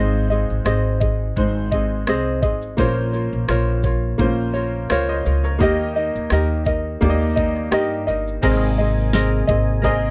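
A bright, thumb-plucked ukulele sits up front in this heartfelt, carefree acoustic pop piece in Ab major at 85 BPM with a light 16th-note swing, joined by a woody, pizzicato steel-string upright bass, a boxy, slightly detuned upright piano and a produced, layered electronic drum kit with knocking kick, fat snare, rim click, shaker and crash cymbal, while a smooth tonewheel organ with chorus vibrato enters in the background at 8.4 seconds, all in a dry, close-miked recording.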